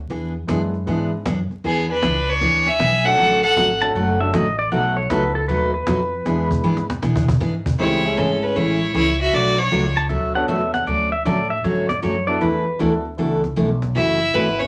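Riding a swung 156 BPM in 4/4, this cheerful, playful slice of country western swing is cut from a longer piece and rests on a growly, woody upright bass plucked pizzicato and a snappy cajon struck with hard hands, its snares rattling close to the ear, with a drum fill from 6.6 to 7.4 seconds. A full-bodied, picked dreadnought acoustic guitar sits up front in the accompaniment alongside a polished upright piano that sounds present and warm. A biting, earthy fiddle with light vibrato carries the melody in short bursts starting at 1.7 seconds, shadowed by a second, smooth and even bowed fiddle playing a lower line. Between those phrases, a clean, compressed pedal steel guitar played with fingerpicks takes the second line up front, sliding with volume swells. The chords move through colorful sevenths and ninths such as Dmaj7, Bm9 and E9sus4, and the whole is bathed in a wet studio reverb with a layer of vinyl crackle.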